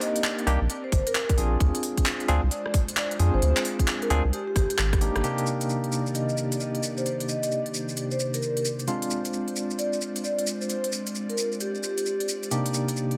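Lightly reverberant, up-front sound carries this bouncy, skippy two-step garage excerpt, where a barky, lightly overdriven tine electric piano stabs through tremolo, delay and a filter sweep, a metallic, ringing vibraphone with slow motor vibrato and delay carries the melody, an airy, breathy pad sustains detuned, chorused chords that pump with the sidechain, and a tape-warm garage kit of crisp hats, handclaps, rim click and shaker swings throughout, while a deep, round dub sub bass and a tight electronic kick join at 0.5 s and 0.9 s; the kick drops out at 5.0 s during a drum fill and band accent, and the bass falls away at the 5.2 s section change.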